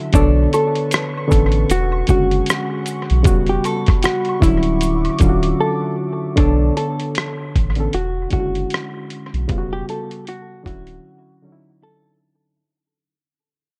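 Nostalgic and cosy, this lo-fi hip hop excerpt sits at 77 BPM in D major with a 16th-note swing, moving through Bm9, E13, Em69 and Dmaj9 twice. A barky, reedy electric piano, lightly overdriven and touched with cassette-tape grit and analog delay, carries the accompaniment up front, while a warbling, detuned pad with chorus and phaser hovers in the background until 6.4 seconds. A dark, clean hollow-body jazz guitar plays the melody in a narrow middle range, its notes trailed by analog delay. Underneath, a deep, round dub sub bass and a gritty, compressed sampler-style kit with a thumpy kick, hi-hat and rim click anchor the groove, joined by close, dry maracas, woodblock and group handclaps until 5.4 seconds. A brief break arrives from 5.6 to 6.4 seconds, and the bass and drums stop at 11.0 seconds, leaving the piano and guitar in an echo-heavy, lightly reverberant mix as the second half fades out.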